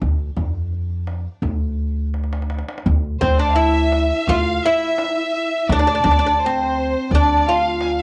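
Arabic maqam ensemble in D minor at 85 BPM, hypnotic and longing, cut from a longer piece, with a bright, woody, fretless oud carrying the melody up front over thumpy, dark pizzicato upright bass and a deep clay-shell darbuka played with hard hands that adds a fill at 2.1 seconds, before a biting solo violin and a smooth studio violin section, both with vibrato and a cassette-tape colour, join on a second line at 3.2 seconds in a home cassette recording with light reverb.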